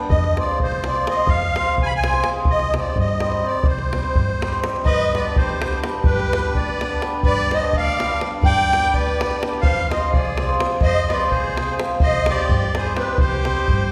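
Heard through the long, wet reverb of a concert hall, this bittersweet, restless cut from a Balkan wedding-band piece drives along at 252 BPM in eighths in a straight 5/8, moving through F minor, C minor and G. A reedy, shimmering musette accordion carries the melody up front over a tight, close and dry davul, a ringing hammered cimbalom, and a woody pizzicato upright bass in the background. At 4.9 seconds a single bowed violin joins as a second line, pure and floating, played sul tasto with a soft attack from a distance.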